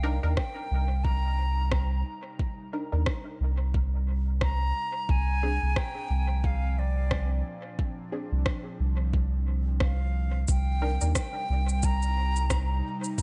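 Hazy and spacious, this ambient dub excerpt moves at 89 BPM in 4/4 with a loose sixteenth-note swing, settled in C minor and drifting from Cm9 to Bbadd9/C at 5.1 seconds and back at 10.5 seconds. A deep, round sub bass sits up front from the start, joined at 0.4 seconds by a soft, overdriven electronic kick and a gritty rim click and shaker, the drums touched with studio reverb and the percussion also trailing dub echo. Muted, detuned chord stabs with a filtered pluck and short decay carry chorus and dub echo before dropping out at 11.1 seconds. Over this, a bright wooden flute with vibrato and lifted highs sings the melody, its phrases repeating through dub echo. An airy, breathy pad with a nasal edge and slow attack fades in beneath everything, its chorused chords sustaining in the background until the close at 13.2 seconds, while the overall sound stays fairly dry and dark at the top.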